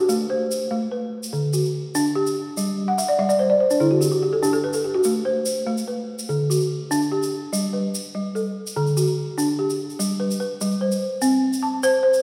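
Woody balafon arpeggios and a grainy tube shaker open this joyful, hypnotic West African string and xylophone piece together, cut from a longer performance in G major. The pulse moves at 97 BPM in a straight 12/8, and the balafon, struck with soft rubber mallets, sounds round and mid-forward, sitting up front across a span from D3 to A5. The shaker stays lower in the balance, its bright, acoustic grain carrying a live-room quality. From 2.9 to 5.0 seconds the balafon breaks into a fill. The harmony moves through Am and D, pauses on a chordless stretch, then returns through Am, D, G and D before a second section begins at 10.0 seconds on G. A church or concert hall setting gives the recording a long, reverberant tail of about 2.1 seconds.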